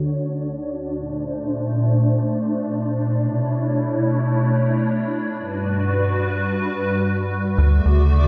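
This short excerpt of IDM opens with a hollow, soft pad holding sustained chords in free time, its flute-like, warbling tone thickened by ensemble chorus and set up front in the mix. Alongside it, a flickering, grainy texture sits quietly in the background, wrapped in its own built-in reverb. The harmony moves in D major from Dmaj7 through Bbmaj9, Bm11 and Gmaj7 before settling back on Dmaj7 at 7.6 s, while a filter sweep runs through the passage until that point. The mood is intricate and glitchy, and a moderate, lush hall reverb with a low-pass filter frames the whole mix. At 7.6 s a rubbery square bass enters on a low D, its bouncy, nasal filter pluck sitting dark and prominent beneath the pad.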